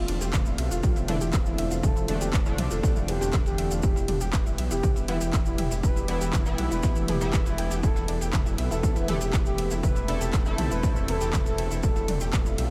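A dark, pumping mix sits in light digital ambience as this melancholic, dramatic melodic techno excerpt moves at 120 BPM in E phrygian, with a punchy, tape-warm electronic kick up front and a deep, rumbling detuned saw bass with tube saturation beneath chords moving from Fadd9/E to Em and Amadd9/E. A smooth, expressive portamento lead with vibrato carries the melody through chorus and diffuse ambient delay, while a thick, phased unison pad, a warbling wave-folded unison pluck arpeggio and edgy sync-sweep polysynth stabs, entering at 1.1 seconds with a cassette tape colour, sit in the background. An overdriven house drum kit with bright hats, handclaps, ride and toms, a gritty, very quiet sampler-style kit and a grainy cabasa fill out the groove.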